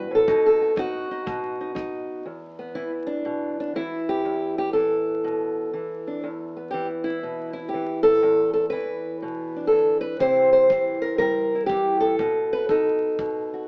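A swung 4/4 feel carries this brooding, smoky stretch of acoustic country blues, cut from a longer piece, where an old ladder-braced acoustic guitar, fingerpicked with woody, boxy tone and old strings, carries the melody up front from the opening bar and plays alone at first. A dark, punchy kick drum with a rolled-off top sits in the background, entering at 0.3 seconds and returning at 10.2 seconds as the chords move through C7 to B7. The stone-room reverb, live-in-one-room feel, vinyl crackle and small-speaker sound give the whole performance a dusty, old-record character.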